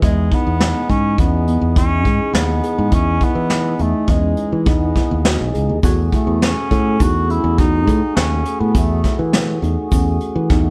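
A warm bass clarinet carries the melody from the start of this driving, bright progressive band piece in 5/4 at 103 BPM in E major. It plays over a brushed vintage drum kit with a punchy kick, an up-front fingered electric bass with a bright, direct tone, a round, percussive tonewheel organ with key click and a slow rotary speaker, and a mellow tine electric piano playing phased arpeggios in the background. The harmony moves from Emaj7 to F#madd9 at 5.8 s, where a grainy, distant egg shaker joins, and the clarinet drops out at 9.3 s, all captured live in one room with moderate studio reverb that leaves the drums roomy with a rolled-off top.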